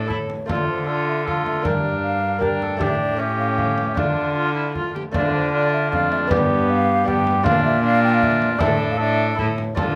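A hollow, airy concert flute carries the melody with vibrato and tongued notes, sitting between C5 and G5 in this courtly, solemn renaissance-style consort dance in D minor. It moves at 155 BPM in a straight 3/4, with a distant, roomy cor anglais tracing a mellow second line beneath it. A delicate, fingerpicked lute with double gut strings, some doubled at the octave, pairs with a single bowed viola with a reedy gut-string tone and smooth top in the accompaniment. An up-front bowed cello gives a rich period-style bass with light vibrato, while a deep, large frame drum enters at 0.1 s, sounding distant in a large room. The short passage is cut from a longer piece and repeats the same phrase twice, passing from D minor through G minor to a suspended A7 before reaching an A chord at 9.4 s, all under a light reverb.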